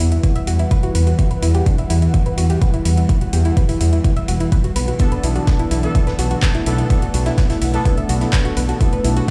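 Melodic techno with a dark, dramatic mood, this excerpt moves from Emadd9 to Bm7 over a detuned, rumbling saw bass and an up-front, tape-toned electronic kick, while a deep, moody pad sits in the background beneath soft, round pluck arpeggios, with the bass, pad and pluck all pumping with sidechain. A very quiet, tense string-like drone with vibrato hums underneath, and a deep house kit adds overdriven metallic hats and handclaps. At 5.0 seconds, bold, brassy analog synth stabs with chorus and delay arrive alongside a faint vintage brush kit with a rolled-off top, the whole mix carrying a stone-room resonance.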